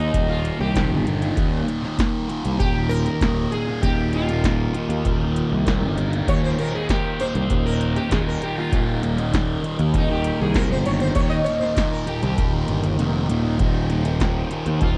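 A dry, close 1970s-style studio sound frames this trippy, hazy psychedelic rock excerpt, where a buzzing, shimmering sitar solos through tape echo over a double-tracked, distorted fuzz guitar riff with phaser, a round, overdriven picked bass up front and an analog drum machine with deep kick, punchy snare and metallic hats, while a very quiet tonewheel organ with key click and slow rotary speaker joins on sustained chords at 3.8 seconds and the kick and snare drop out briefly at 13.0 seconds.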